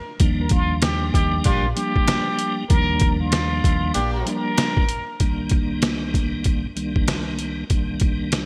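A plunger-muted trumpet opens this reflective yet tough boom-bap hip-hop excerpt at 96 BPM in C minor, its brilliant wah-wah jazz line carrying digital delay over a swung groove from a gritty, pitched-down sampler drum kit with a thumpy kick and gated reverb. A piping tonewheel organ with key click, light overdrive and slow rotary sits up front over Ebmaj9, joined by a round, dark fingered bass, faint finger snaps and tight, delayed horn-section stabs. The bass stops at 4.2 seconds, and the trumpet then drops out at 5.2 seconds as the harmony moves to Cm7, leaving organ and drums under a bright 1980s-style digital sheen.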